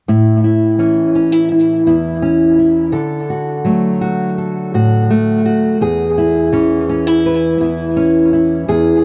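Hopeful and anthemic in spirit, this short folk excerpt moves at 84 BPM in a straight 4/4 feel in A major, tuned slightly below standard pitch with A4 at 439 Hz. A single fingerpicked steel-string acoustic guitar carries the accompaniment from 0.1 to 9.0 seconds, ranging from E2 up to B4 with a dark, concert-quality tone placed up front in the mix. Its sound is drenched in dub echo, giving the recording an echo-heavy character set within a light reverb. The harmony moves from A to D at 2.9 seconds and then to C#m/E at 5.8 seconds. The passage is cut from a longer piece.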